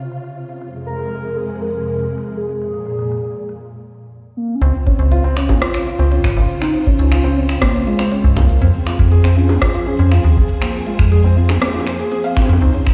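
Heard as if through a big sound system in a bare stone room, this excerpt from a longer IDM piece has a light digital ambience and a dulled top end that stops short of 10.5 kHz. At 120 BPM in a straight 4/4, the mood is intricate and playful, opening on a silky, vintage string machine whose sustained chords carry ensemble chorus, sidechain pumping and a filter sweep through the opening section. An industrial kit of finger snaps, crisp hi-hats, rim clicks, shaker and toms ticks along under low-pass filtering with a tape-warm, small-room character. From 0.9 seconds a warbling, nostalgic lead with vibrato, subtle chorus and delay carries the melody over chords that move between Dbmaj7 and Fm. After a break at 3.6 seconds, the second section arrives at 4.6 seconds with a felt-muted upright piano playing intimate arpeggios, its action noise audible beneath 12-bit sampler grit and delay. An up-front, metallic FM bass with fast, decaying notes and a deep analog kick add weight underneath.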